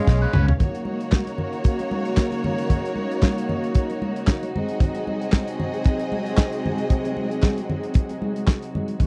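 A swung 4/4 disco groove at 114 BPM opens with a drum fill from the soul kit, its tight kick, medium-tuned snare, hi-hat, toms and handclaps sitting up front with a rolled-off top, while a growly, round fingered bass and a scooped, slightly broken-up electric guitar with wah and a warbly pitch drift appear only briefly around 0.1 to 0.5 seconds. From 0.4 seconds compressed, saturated congas struck with hard hands join the beat, beneath a lush, expressive violin section playing a second line with vibrato and a dark, reedy string section holding sustained chords at a distance with a gut-string, period-style tone. The dry, close 1970s-style studio sound gives this short, celebratory and danceable excerpt a warm intimacy as the harmony moves from D#m7 to G#7.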